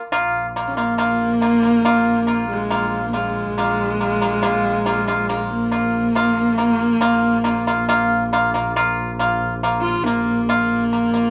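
This vast, windswept Mongolian traditional excerpt moves at a steady 69 BPM in 4/4. A bright, dry pipa plucks percussive fingerpicked arpeggios up front, over a distant, focused bowed double bass drone on Bb1 with vibrato, all on a single Bb5 chord. At 0.7 seconds a husky horsehead fiddle enters with an intimate, close melody full of vibrato, portamento and an airy bow, while the band plays live together in one room under a wet studio reverb.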